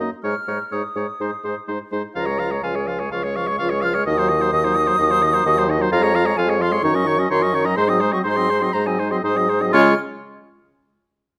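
A pure, silvery concert flute carries the melody high above the ensemble, entering at 0.2 seconds with a soft attack and warm vibrato. This lively, spirited classical-period movement for wind quintet moves at a quick 126 BPM in 4/4 and Db major, though the rubato feel lets the pulse breathe. Beneath the flute, a clear oboe sings a second line, while the clarinet holds down accompaniment from the background and a mellow French horn adds a smooth-topped middle voice. A dark bassoon with light vibrato sits up front on the bass line, grounding the harmony as it moves from Absus4 through Db, Cdim/Eb and Ebm7/Gb to Ab7 before settling on Db at 9.7 seconds. The quintet plays in a large studio with moderate reverb, and the passage is cut from a longer piece, with the accompanying parts closing at 9.9 seconds.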